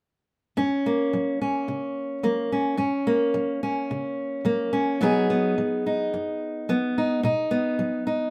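A close, up-front sound in a small room with moderate reverb frames this short, uplifting folk passage at 108 BPM in straight 4/4, captured live. A fingerpicked steel-string acoustic guitar with a warm auditorium-body tone carries the accompaniment from 0.6 s to 8.3 s, spanning F#2 to G#4. The harmony rests on F# before shifting to B6 at 5.0 s.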